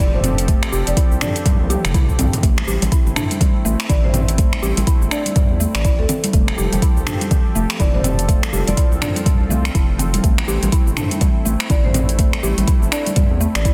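Spiritual and warm, this afro house excerpt moves at 123 BPM in A minor with a swung 16th-note feel, cycling between Fmaj7 and Am. A detuned sawtooth pad sustains chords with chorus, tremolo and sidechain pumping, while a woody FM pluck plays arpeggios and a dark, smooth marimba carries the melody in the background, both trailing tape echo beneath a round, wave-folded analog bass thickened by tube saturation. The deep house kit brings finger snaps, metallic hats, shaker and toms with overdrive and a drum fill at 1.5 seconds; a deep electronic kick enters at 0.5 seconds and soft-handed, band-limited congas join at 2.6 seconds, all in light digital ambience and a dense, heavily limited master.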